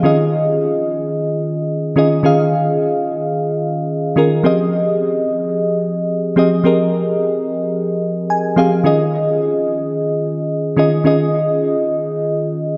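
A lightly swung sixteenth-note feel at 109 BPM in 4/4 gives this amapiano fragment, cut from a longer piece, a hypnotic, soulful sway. A bell-like FM electric piano plays alone throughout, spanning Eb3 to Ab5 with a sparkling, fast-attack tone that decays into mellow chorus shimmer and tape echo, a noise layer woven into its sound. The harmony moves from Eb9sus4 to Fm9 at 4.4 seconds and back to Eb9sus4 at 8.8 seconds, just after a short piano fill between 8.0 and 8.8 seconds. The instrument sits up front in a dreamy mix soaked in a church reverb with a 3.2-second tail.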